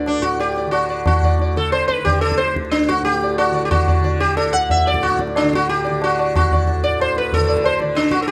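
Hindustani classical music in raga Khamaj on D, radiant and devotional, moves at about 182 BPM in a straight 4/4 and gradually speeds up through this short fragment of a longer piece, with a bright, plectrum-plucked sitar up front carrying the melody amid the buzz and shimmer of its sympathetic strings, a softly plucked tanpura holding a low, buzzing drone beneath, and low-tuned, ringing tabla joining at 0.1 seconds, all captured with close, detailed microphones in a moderate recital-hall reverb.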